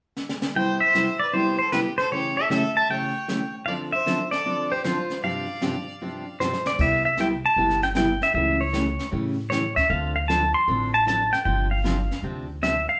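Swung eighths at 154 BPM drive this cheerful country western swing excerpt in C major, where a brushed jazz kit with dark cymbals and a boomy kick opens with a fill at 0.2 seconds, a clean, compressed pedal steel guitar plays the up-front slide melody with fingerpicks, a warm, picked dreadnought acoustic guitar accompanies, a distant, biting fiddle adds a second line until 6.4 seconds, and a woody, thumpy upright bass on gut strings enters at 6.8 seconds, with the band heard live in one room under a wet studio reverb.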